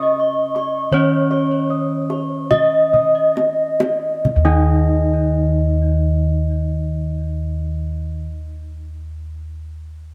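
Heard from further back in a room awash in wet spring reverb, this serene, ceremonial slice of a longer Javanese gamelan piece unfolds in a straight four. Bronze metallophones carry the ringing melody, touched by tape echo, along with a lower accompaniment and high arpeggios. Bossed gongs add mellow, padded-beater arpeggios above and a soft, round bass below. The tight kendang drum enters shortly after the start as the music slows through its first 4.2 seconds, and a drum fill from 2.9 seconds leads into the next section.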